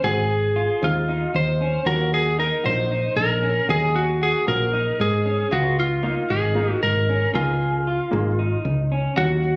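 Captured on a phone in a room with club reverb and compression, this brooding, driving cut from a longer progressive instrumental moves at 230 BPM in eighths in a straight 7/8, passing through Ab, Ebm7 and Db6. A lightly driven, picked lead guitar sits up front with tape echo, carrying the melody between F4 and C5, while a dark, fingered electric guitar at the edge of break-up plays arpeggios. A round, hollow-body fretless bass anchors the low end, and a smooth, vintage baby grand piano adds accompaniment until 9.3 seconds.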